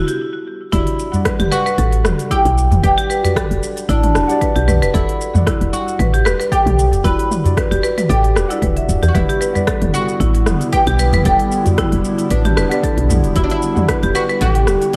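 A lightly swung 114 BPM groove in 4/4 drives this mystical, earthy organic downtempo excerpt in E minor, where crisp, overdriven electronic drums with hi-hat, rim click, shaker and toms pause briefly between 0.2 and 0.7 seconds before resuming, joined at 0.7 seconds by a punchy layered kick sitting in the background and at 1.1 seconds by a small, close, dry udu. Over a round, dark woody FM bass, a plectrum-plucked fretless oud with doubled strings carries the melody through analog delay, while a bright, hard-mallet marimba on padauk bars spins arpeggios and muted, felt-like synth keys add pumping, chorused accompaniment on Em7. An airy, breathy pad with a slightly nasal, detuned edge swells back in at 9.1 seconds, its sustained chords pumping gently, and the whole mix is soaked in a dreamy plate reverb.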